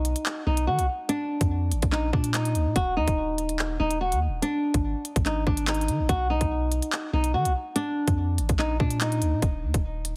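A dark, fingerpicked flamenco guitar sits up front in this cold, menacing drill cut, its acoustic tone rounded off by a low-pass filter and trailed by a delay as it traces a narrow melody. Beneath it, a long, sustained 808-style bass with a deep, sine-like body and a fast attack decays into shadowy low end, also placed up front. The electronic drill kit rides a half-time feel, with a hard-clipped kick, crisp hi-hats and handclaps giving it a produced, forward punch. The harmony moves through B, Bbsus4, Ebm and Ab5 before circling back, and a heavily compressed, radio-like digital ambience hangs over the mix. The guitar drops out at 9.4 seconds, leaving bass and drums to carry a short break to the end of this fragment from a longer piece.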